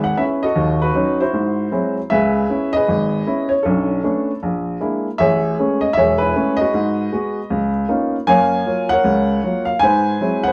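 A woody, vintage upright piano carries this cool, smoky solo jazz piece alone from start to finish, its audible action noise lending an intimate, close-up character. The swung feel in 4/4 gives the playing a lilt, and the part spans a broad register from deep bass notes up to G#5. The harmony moves through rich, extended chords such as C#m7, Bm9, Amaj9 and C#13 before settling on a tense G#7alt. An opening phrase gives way at 2.1 seconds to a longer passage that runs to the end at 10.5 seconds. The piano's smooth, long-sustaining tone sits up front, while a wet studio reverb suggests a listener further back in the room, and the recording is cut from a longer piece.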